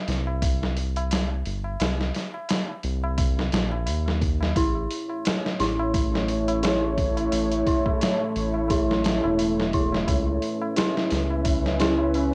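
Melancholic and smoky, this trip hop excerpt moves at 87 BPM in 4/4 with a lightly swung sixteenth-note feel. A gritty, pitched-down sampler-style drum kit with a thumpy kick, a medium-tuned snare and hi-hat sits up front alongside a round, deep analog bass, both starting at 0.1 seconds, while a high-tuned, ringing tabla enters just after in the background. At 4.6 seconds an eerie, inharmonic FM synth bell begins arpeggios on E4, colored by chorus, phaser and tape echo. A deep, moody pad follows at 5.1 seconds with slow-attack sustained chords, thickened by detuned unison and a sub octave and softened by chorus and its own reverb. The harmony shifts from Cm to A and then to C#m7, and the whole excerpt carries the hazy grain of a home cassette recording in a lightly reverberant space.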